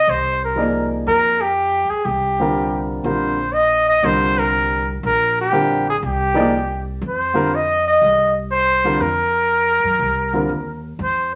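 A soloing trumpet with a smooth top and vibrato leads this intense, hypnotic modal jazz passage, sitting up front with a swung eighth-note feel over an F9sus4 chord. Pizzicato upright bass adds a woody, thumpy pulse lower in the mix, while a natural-sounding, warm grand piano comps close up after entering at 0.6 s. A wet studio reverb surrounds the group in this short section cut from a longer performance.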